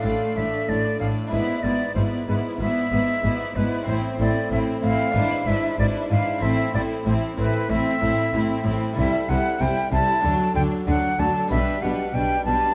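This baroque-style concerto movement, heard in a short cut from a longer work, moves at 94 BPM in a straight 4/4 with a festive, brilliant character, starting in A minor and turning toward G major at 9.0 seconds. A silver concert flute leads the melody up front, its airy, metallic tone carrying vibrato and tongued articulation, while a very quiet chamber violin section also carries a melodic line with a focused, smooth top. A close studio violin section supplies a second line in a narrow middle register, and a distant viola section fills the accompaniment with an even, bowed sound. A French-style harpsichord with two sets of strings adds a full, plucked texture beneath, and the bass is anchored by a cello section sitting in the background with soft attacks and expressive portamento, joined by a smooth double bass section. Moderate recital hall reverb gives the ensemble a sense of space, and the harmony moves through dominant sevenths over G-sharp in the bass before settling on D and G/B near the end.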